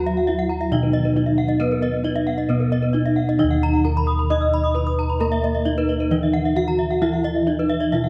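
Opening at once with a mellow, padded-mallet bronze metallophone melody over soft, round bossed gongs in the bass, a boxy horn-struck metallophone accompaniment and a bright horn-struck metallophone arpeggio, joined at 0.1 s by a dry, close-miked wooden-mallet arpeggio line, this hypnotic, brilliant Balinese gamelan fragment in Eb pelog moves at 132 BPM in a straight 4/4, its paired-tuned metallophones shimmering with beats inside a dark concert-hall reverb of 1.9 s.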